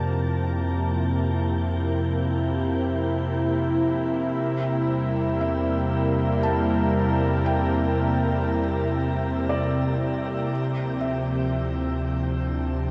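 Ambient and serene at 59 BPM in 3/4, this luminous excerpt sets a smooth, detuned sawtooth pad with chorus up front over a deep, round sub bass through Fmaj7, C7/E and Dm7, while a nasal, organ-like drone fades out and a breathy, wind-like noise texture fades in from the background, both carrying built-in reverb, before a mellow felt-muted upright piano with audible action noise enters at 5.4 s playing arpeggios through tape echo, all bathed in a dark, warm production with an 8.6-second shimmer reverb.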